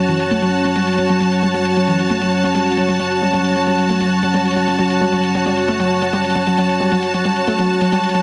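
A warbling, dusty pluck riff, a deep, dark ambient pad and a clear symphonic string section all sound together at the outset of this short cut from a longer driving peak-time techno track, whose mood is industrial and hypnotic in a straight 4/4 metre. The lo-fi pluck blends square and sawtooth tones with a noise layer and a filter sweep, its fast-attack, decaying notes softened by subtle chorus and tape echo. Alongside it the pad holds a sustained, moody drone of detuned unison saws, sine and a sub octave, with a slow attack, long release, chorus and its own built-in reverb. Up front and slightly louder, the bowed string ensemble adds a smooth, even texture with light vibrato above the other parts. An analog-sounding electronic hi-hat, re-recorded in a small room, enters at 0.1 s and stays very quiet in the mix. The whole passage rests on a single F#m chord under a moderate plate reverb, and the mix is dense and heavily limited in a modern style.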